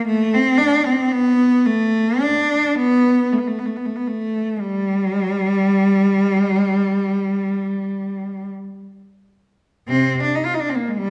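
Classical solo for unaccompanied cello, meditative and lonely in mood, moving at a slow, free 37-58 BPM in 4/4 with expressive rubato. A single bowed cello carries the whole piece, spanning a range of C3 to F4 with a rich, focused tone and singing vibrato. The instrument sits up front, while a wet recital hall reverb with an RT60 of 1.4 s lends a sense of open space around its solitary line. The passage unfolds mostly in one long opening stretch, then shifts into a new section at 9.9 s before the cut at 11.1 s. Cut from a longer work, it feels like a brief, introspective glimpse of a larger musical thought.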